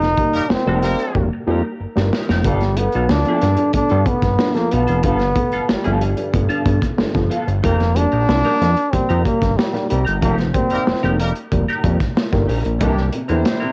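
Strutting and playful, this funk excerpt at 93 BPM, tuned to A4 = 435 Hz, sets an up-front, clear trombone melody with light vibrato over a fat, detuned sawtooth analog bass, a crunchy, gritty breakbeat kit with a tight kick, a clean semi-hollow electric guitar through wah, and a dark, woody upright piano adding stabs through tape echo, while a distant, punchy horn section in octave doubling plays a second line at 0.3 seconds and again from 10.7 seconds, with band accents and a drum fill at 1.2 seconds, all captured as a homespun cassette recording in a small room.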